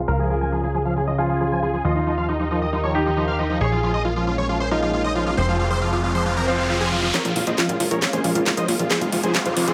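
Under light reverb, this bittersweet, emotional uplifting trance excerpt sets a euphoric, detuned supersaw lead over a lush, wave-folded pad, a punchy, funky analog bass, squelchy acid bass arpeggios, a brilliant baby grand piano line with 12-bit grit and dub echo, and a background riser from 5.1 seconds, before a house drum kit with a cracking snare and metallic hats enters at 7.1 seconds for a build-up and drum fill.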